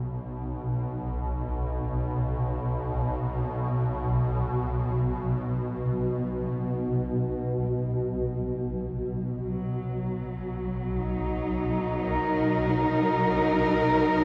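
A swarming, nasal drone of detuned, granular tones hangs low and tense in free time from the start, slowly evolving within its own reverb before a dark, lush bowed cello section enters at 9.4 seconds with expressive vibrato and portamento on a sustained D# minor chord, the whole unsettling, desolate dark ambient excerpt steeped in a long cathedral reverb.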